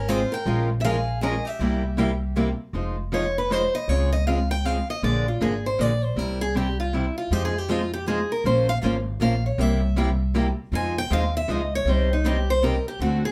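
This excerpt has a wet club reverb and a slightly distant vantage, as if heard from further back in the room. It is acoustic string swing in the jazz manouche style at 158 BPM in 3/4 and F minor, with a swinging, bittersweet mood. An up-front picked steel-string guitar, bright and boxy with a parlour body, fresh strings and audible finger squeak, carries the melody with plate reverb and takes a solo from 2.7 seconds. It is joined briefly at the start by a concert guitar on a second line. A woody, thumpy gut-string upright bass plays pizzicato and sits dark and close beneath. Two more picked guitars play accompaniment: one warm and up front throughout, the other bright and boxy in the background, dropping out and returning at 7.3 seconds, as the harmony moves through chords like Fm7, Dbmaj7, Bb7 and C7.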